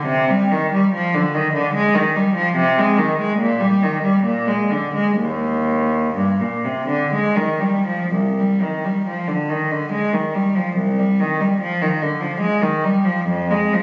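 Flowing yet grave, this baroque-style suite movement for unaccompanied cello moves in 3/4 with a rubato feel, its tempo easing between 58 and 74 BPM. A single bowed cello carries everything from 0.0 to 13.8 seconds, ranging from C2 up to Ab3 and sitting up front in the sound. Its tone is rich and reedy, with a gut-string, period-style character and a light vibrato. The music begins in Eb major and turns toward C minor at 8.1 seconds, where the opening material returns in the darker key. A moderate concert hall reverb surrounds the instrument, and the capture has the compressed quality of a phone recording made in the room. This is a short portion cut from a longer piece.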